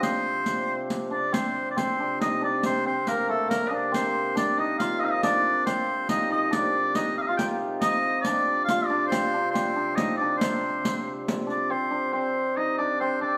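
A bright shawm with vibrato leads the folk-style melody up front from the first moment, over a mellow, shimmering hammered dulcimer second line, a reedy, breathing harmonium drone on C3 and a riq with dark jingles and hard hands that drops out at 11.6 seconds, giving this short cut from a longer medieval dance in triple metre an ancient, driving mood, with the band playing live together in one room under a wet large-studio reverb.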